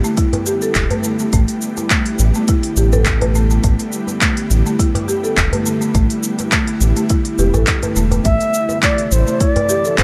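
An ethereal, detuned pad with ensemble chorus, reverb and vintage 12-bit sampler grit pumps beneath buzzing, woody hard-mallet marimba arpeggios with delay and a tape-warm electronic kit of handclaps, smooth hi-hat and shaker as this meditative, mystical organic downtempo excerpt opens at 104 BPM, soon joined by a deep layered kick, a tight, cracking djembe and a round, dark analog bass that pumps up front from 0.8 s, before an airy cedar flute with vibrato and delay enters at 8.2 s as Em7 gives way to Am.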